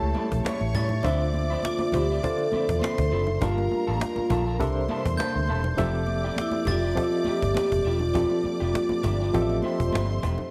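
A small-room ambience and light reverb frame this short passage of lush 1970s-style soul in F major, moving at 101 BPM in 4/4 with a gentle sixteenth-note swing and a warm, romantic mood. The vibraphone carries the melody from 1.7 seconds, its metallic, ringing tone shaded by a slow motor vibrato, while a dark, round, foam-muted electric bass sits up front with an amped, vintage character. A reedy, barky electric piano plays accompaniment, lightly overdriven and pulsing with fast tremolo through its built-in speakers, and a bowed studio string section adds a smooth, even second line with vibrato. A mellow French horn section holds tight, very quiet sustained chords, and an electric guitar through a small old amp plays a slightly broken-up, picked, compressed riff in the background. The rhythm comes from a woody, close and dry cajon struck with hard hands and showing faint snares, alongside high-tuned congas and a sparkling glockenspiel with brass mallets, which enters at 0.8 seconds and adds bell-like shimmer from behind. 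The harmony moves from A7 through Dm9, Gm9 and C13 before settling on Fmaj9 at 5.8 seconds.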